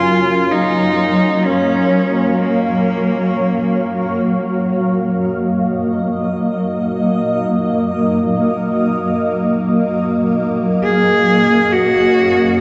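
Free-time and weightless, this ambient fragment in F# major floats on a blurred, detuned granular cloud pad holding sustained chords that move from F#maj7 to A#m/F#, while a clear, bowed cello sings a smooth vibrato melody through delay until 4.3 s and returns at 10.8 s, a very quiet felt-muted upright piano offers a brief mellow arpeggio in the opening half-second, and a vast, dark reverb surrounds it all.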